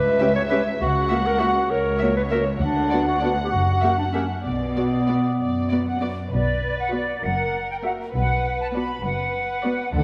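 A roomy scoring-stage reverb surrounds this short, sneaky and whimsical film cue in a lilting 6/8, where veiled, con sordino strings, with muted violins carrying a soft, smooth-topped melody, violas filling in the harmony and close cellos and double basses underneath, creep through shadowy minor-key chords. Up front, a clear, soft-edged solo clarinet adds a playful second line until about 6.0 seconds. At 6.3 seconds a pure, bright flute section takes over that role for the quirky closing phrase.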